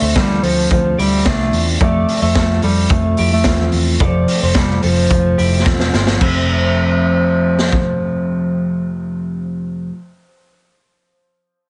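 A straight 4/4 groove at 109 BPM drives this breezy, bright jangly indie pop excerpt in F major, where a mellow, smooth-topped bass clarinet carries the melody with delay over a twangy, bright twelve-string electric guitar playing arpeggios, a slightly broken-up rhythm guitar with subtle chorus in the background, a dark, round foam-muted picked bass, and a gritty, boomy garage drum kit up front that enters at 0.2 s and plays a fill from 5.7 s, all moving from Dm7 to F in a small club room with a heavily compressed, radio-like sound.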